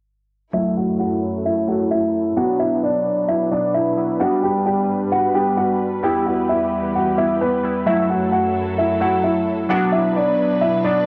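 A home recording on cassette, bathed in moderate spring reverb, carries this brooding hip hop fragment, cut from a longer piece and set at 131 BPM in 4/4 with a half-time feel in F# phrygian. Up front from 0.5 seconds, a concert grand piano carries the melody, its dark, mellow tone, deep bass and long sustain softened by a low-pass filter and tape coloring. Also up front, glassy digital keys with a sine-like, fast-attack, decaying sound play the accompaniment through chorus, shaped by a filter sweep across the whole passage. Lower in the mix, a rich symphonic string section holds sustained bowed chords with light vibrato, a biting, intense edge and a close ensemble presence, likewise filtered and tape-treated. The harmony moves through F#m7, Bm, G and Em before returning to F#m7 and Bm, and the three parts stop together around 11 seconds.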